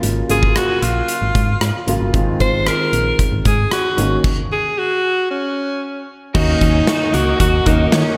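A straight 4/4 pulse at 114 BPM drives this glossy, romantic 1980s-style pop excerpt, anchored by an up-front big rock drum kit of punchy kick, medium-tuned snare, rim click, hi-hat and bright crash cymbals in a studio room. A round, dark FM bass with a fast, decaying attack and a polished baby grand piano carry the harmony, moving from Gbmaj7/Ab through Fm7/Ab to Ebm7/Ab. From 0.3 s a present alto saxophone takes the solo melody in pop style, its light vibrato carried by a slapback echo. A stop arrives at 4.2 s, and at 6.3 s the music lands on Ebm7 as two background parts join. A twangy, compressed twelve-string electric guitar riff enters alongside a silky, warbling string machine with a slow attack, both shimmering with ensemble chorus. Lush hall reverb gives the recording a big arena sound.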